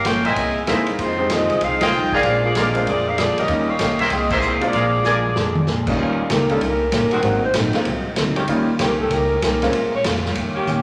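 Swinging and joyful, this big band jazz excerpt opens with a clear, close-miked saxophone section carrying the melody up front, its soft attack and vibrato shaping the line. A brilliant, tight trumpet section adds vintage stabs, and the whole band hits shared accents before a drum fill at 5.1 s leads into the second half. Underneath, a woody, growly pizzicato upright bass and a natural, big-room drum kit with a punchy kick and medium-tuned snare keep the swing moving throughout. A bright upright piano with long sustain and a boxy, picked steel-string acoustic guitar sitting in the background fill out the accompaniment. At 6.3 s a clarinet takes a short vintage solo with subtone and vibrato, while the saxophones return in the background with smooth, lightly vibrato sustained chords, all bathed in a wet, large studio reverb.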